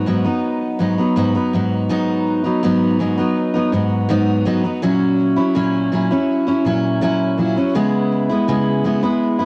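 A home cassette recording with a moderate studio reverb gives this short cut from a longer indie pop piece a hazy, lonely atmosphere. A single picked steel-string acoustic guitar plays alone from 0.0 to 9.5 seconds, sitting up front with the full-bodied resonance of a jumbo body and the warm ring of fresh strings. Lush chorus, a warbly pitch drift and cassette tape coloring shape its tone, while a finger squeak adds an intimate touch. At a slow 82 BPM in straight 4/4 and G# minor, the guitar ranges from G#2 to E4, moving from G#m7 to F#7/A# and settling on C#m7. A brief opening passage gives way to a longer second part at 1.9 seconds, keeping the mood drifting and solitary.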